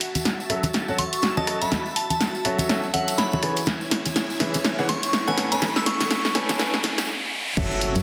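Over a punchy analog drum machine fill up front, acoustic tambourine and congas, and shimmering vintage string machine chords and a riser in the background, a clear, intimate grand piano riff with sidechain pumping and tape echo enters at 0.5 s in this soulful, bittersweet piano house build-up at 123 BPM. A glassy, crystalline synth bell melody joins from 1.0 to 6.1 s, until the impact at 7.6 s brings in a round, dark FM bass and an overdriven electronic kick over F#m7, E6 and Amaj9 chords in a dense, reverberant mix.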